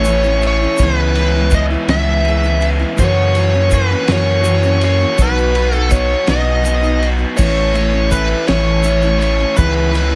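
A hopeful, warm slice of folk rock and heartland rock, cut from a longer piece, rolling in a slow 6/8 at 55 BPM as the chords move through A, C#m7, F#7 and B. Up front, a dark, distorted lead guitar sings a bluesy melody over a round, deep sine-like sub bass. Behind them sit a bright, full-bodied jumbo acoustic guitar picking the accompaniment and a crunchy, double-tracked electric riff. Further back are a grainy, close tube shaker and a cloth-damped, thuddy drum kit with a fat snare, tight kick and dark crash and ride cymbals, all in a small room.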